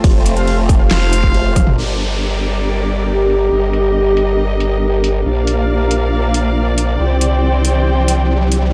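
Menacing and chaotic, this heavy wobble dubstep excerpt moves at 138 BPM in a half-time 4/4 feel in G minor, opening on a drop where a punchy, overdriven electronic kick pounds until 1.6 s, joined by a drum fill, tight bright brass stabs with dub echo, and a nasal, resonant vowel-sweep wobble bass. Throughout, an up-front formant-sweep wobble bass with chorus and overdrive growls beneath veiled, con sordino strings holding sustained chords with sidechain pumping, while a deep, detuned, wave-folded ambient pad hangs in the background and the overdriven dubstep kit of deep snare, metallic hats, ride, claps and toms grows filtered from 1.8 s. A downlifter and riser add electronic sweep, the riser climbing from 6.6 s to the cut as the chords move through Gm, Eb/G, Bb and Csus2 in a dark production wrapped in digital plate ambience.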